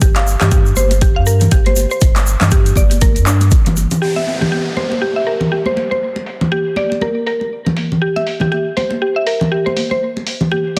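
Afro house at 120 BPM in 4/4, with a swung sixteenth-note feel and a warm, hypnotic mood, cut from a longer piece. A woody, mallet-like FM synth pluck spins arpeggios throughout, up front and mellow, its fast-attack, decaying notes thickened by chorus and delay and pumping against the sidechain. For the first four seconds a round sine sub bass and a deep, tape-tinged electronic kick anchor the groove, joined by a grainy tube shaker, before these drop away at about 4.0 seconds, where the harmony settles on a C5 chord. A layered deep house kit with overdriven, metallic hi-hats and handclaps runs the whole way, its hats and snare low-pass filtered and a filter sweep moving across the drums from 4.0 seconds on. Bright, band-limited congas with hard hands sit prominently from just after the start, while an electronic downlifter passes underneath between 4.0 and 8.0 seconds, all set in light reverb with a dense, heavily limited modern master.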